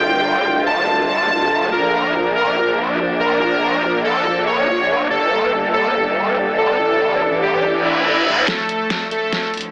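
Heavy wobble dubstep with a menacing, aggressive half-time feel, where a growling, wobbling distorted bass and a smooth, up-front supersaw melody ride over bowed studio strings with light vibrato and a deep, moody ambient pad in the background, until a reverse cymbal and riser at 7.8 seconds lead into an overdriven drum fill of deep snare and metallic hats at 8.5 seconds, all through a lush hall reverb and an AM radio tone.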